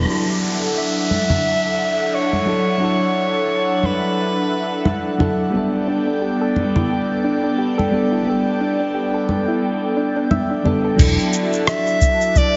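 A bright, punchy soprano saxophone with light vibrato carries the melody in this relaxed 88 BPM sunset chillout excerpt in E dorian, floating over a mellow FM electric piano with chorus and tape echo, an airy, breathy pad shimmering through chorus and phaser, gentle arpeggiated plucks in the background, soft-handed congas and an electronic downlifter, until at 11.0 s a deep electronic kick, a gritty sampler-style kit with crash, rim click and shaker, and a dark, round fingered bass come in, the whole mix set in a wet concert hall reverb and squeezed into a heavily compressed, radio-like sound.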